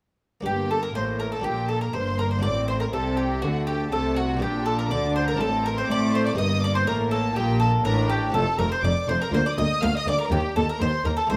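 Dramatic and stormy, this baroque-style concerto movement in G minor drives along at 122 BPM in a straight 4/4, with an up-front, round-toned picked mandolin sharing the melody with a violin section whose gut strings sound reedy and smooth on top, while a second violin line and a viola section sit in the background. Cello and double bass sections anchor the bass, the cellos heard from a distance, and a very quiet, muted buff-stop harpsichord adds dry, lute-like plucked accompaniment. Close, detailed microphones capture the period-style ensemble in a moderate recital hall reverb as the harmony moves from G minor through D7 toward F, B-flat and E-flat in this short fragment of a longer piece.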